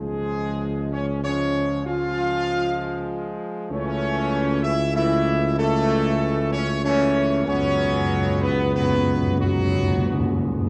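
Classical brass writing in a solemn, majestic mood, moving at 95 BPM in a straight 3/4 and tuned slightly high, with A4 at 445 Hz. A mellow trumpet section carries the melody with a soft attack and light vibrato, while a clear, present trombone section and a dark, distant French horn section hold sustained chords beneath it. A dark tuba sits up front on the bass, anchoring the harmony as it shifts from C# to A/C# at 3.7 seconds and then to F#sus4/C# at 7.5 seconds. At that same 7.5-second mark, timpani enter with a fill, their calf heads struck with soft mallets for a round tone. The whole passage sits in a scoring-stage reverb with a dark production, and it is cut from a longer piece.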